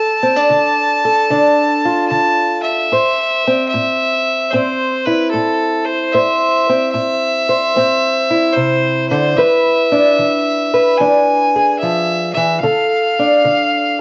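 Muffled by a home cassette recording in a small room with light reverb, this smoky, soulful fragment of acoustic country blues swings gently in 4/4 as a clear, earthy bowed fiddle with light vibrato sings the melody over a woody, boxy fingerpicked ladder-braced guitar with old strings, moving through Dm, Am and E7 before settling back on Dm at 12.6 seconds.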